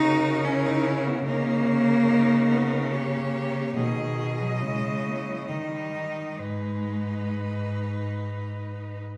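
Classical and lyrical, this yearning, elegiac excerpt for cello ensemble sways in a rubato 3/4, with a clear, focused solo cello singing the melody with vibrato over a distant second cello line, while a smooth, even accompanying cello sits up front with the bowed bass cello, all heard from further back in a reverberant recital hall as the harmony settles onto G#m at 6.4 seconds.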